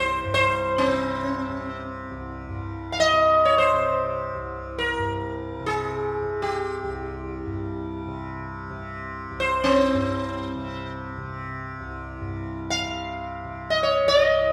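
A sitar and a tanpura drone sound together from the first moment in this introspective, meditative Hindustani excerpt in free time, set in raga Bhairavi on C, where the round, up-front sitar with its buzzing sympathetic strings carries the melody between C4 and F5 over the tanpura's softly plucked, shimmering drone low beneath it, all bathed in the wet reverb of a recital hall.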